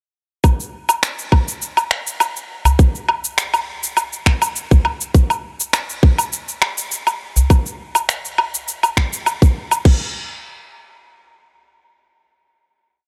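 Downtempo groove at 102 BPM in 4/4 with a light sixteenth-note swing, earthy and meditative, where a tight, tape-warm electronic kick sits up front alongside an overdriven deep house kit of cabasa, woodblock, finger snaps and crash cymbal, a deep, close and dry udu joins from 2.7 to 7.5 seconds, and the groove gives way to a final hit at 9.9 seconds in a digital ambience.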